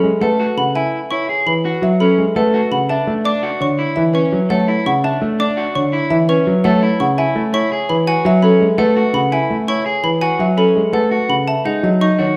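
A marimba played with soft mallets carries the melody in this meditative, hypnotic excerpt of minimalist classical pattern music, its round, mellow tone sitting at the center of a brisk 168 BPM pulse in 6/4 with a straight feel. Beneath it, a dark concert grand piano provides intimate accompaniment in its low register, up front and vintage-sounding, with deep bass and the soft mechanical noise of its action audible. An electric guitar at the edge of break-up picks arpeggios just beneath the melody, lending a slightly gritty electric shade, while a xylophone with rubber mallets adds higher, woody, dry arpeggios that stay in the background and drop out at 12.2 seconds. The harmony drifts through lush ninth chords, moving from Amaj9 to a rootless Bm9, back to Amaj9, and arriving at F#m9 at 11.5 seconds. A moderate scoring-stage reverb gives the ensemble a spacious bloom, with the music tuned slightly low at A4 = 439 Hz.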